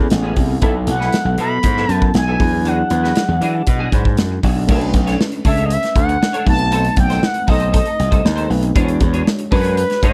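A straight 4/4 groove at 118 BPM drives this urban, bittersweet slice of polished 1980s jazz-funk pop, where a punchy acoustic studio kit and a bright, overdriven slap bass sit up front beneath a smooth, resonant sawtooth synth lead carrying the melody with vibrato and slapback echo, while a worn, slightly out-of-tune tine electric piano with lush chorus sits in the background, a twangy, compressed clean guitar picks a riff from 0.1 s, and the dry mix moves from Amaj9 through Bm9 to E13.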